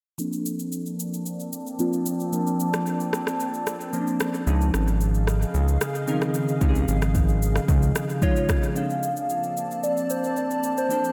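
A straight 4/4 amapiano groove at 112 BPM opens the clip, with an electronic afro-pop drum kit putting a deep kick up front alongside rim click and shaker. Glassy digital keys in Bb major sketch sine-toned, dark chords that decay under a filter sweep and chorus, and an ethereal FM pad joins at 1.1 seconds, drifting in on a slow attack with ensemble chorus, its own reverb and sidechain pumping. The harmony moves from Bbmaj9 to Dbmaj9 at 4.5 seconds, where a fat, detuned sawtooth bass steps forward with a thick, evolving tone before dropping out near 7.9 seconds. At 8.2 seconds a soft struck synth lead carries the melody up front, round and bright with a sub octave, chorus and delay, and the chords return to Bbmaj9 at 8.8 seconds. The whole mix is soaked in lush hall reverb, giving this soulful fragment a dreamy, warm glow.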